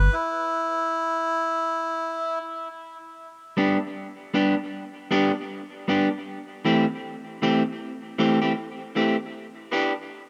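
Deep and spacious, this dub reggae excerpt moves at 78 BPM in 4/4 with a swung sixteenth-note feel, opening on a break where an up-front, reedy, breathy melodica carries the melody alone with dub echo until 2.4 seconds. At 3.6 seconds a clean, picked electric guitar enters as accompaniment over G, Am7 and Em7, its high-pass filtered tone treated with dub echo and swept by a filter from 6.3 seconds, all set in a light studio reverb.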